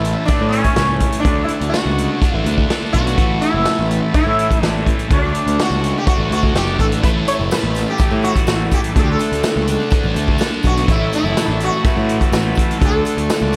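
A steady, straight 4/4 groove at 125 BPM drives this kaleidoscopic, trippy psychedelic rock clip, cut from a longer piece and tuned slightly flat to A4 = 438 Hz. The vintage drum kit sits up front with a punchy kick, a medium-tuned snare and hi-hat, sounding natural in a studio room with a rolled-off top. Beneath it, a round, overdriven fuzz bass anchors the low end, while a double-tracked, distorted fuzz guitar with phaser drives a riff over chords alternating between Asus2 and D. A bright, buzzing sitar carries the melody between C#4 and C#5, its sympathetic strings shimmering through a slapback echo. A smooth, clean tonewheel organ holds sustained chords in the background through a slow rotary speaker, and a jingly, very quiet tambourine joins at 7.0 seconds, all set in light reverb.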